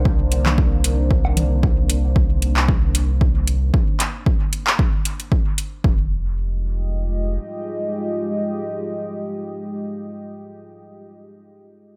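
A punchy, overdriven electronic kick drives this cavernous dub techno fragment in F minor at 114 BPM with a light swing, alongside an up-front deep house kit of handclaps and metallic hi-hats, a round, soft sub bass that pumps until 7.4 s, a brief burst of electronic toms and woodblock with dub echo, and a dark, detuned sawtooth pad with chorus that moves from Cm9 to Fm9 at 5.8 s and sustains alone to 10.8 s.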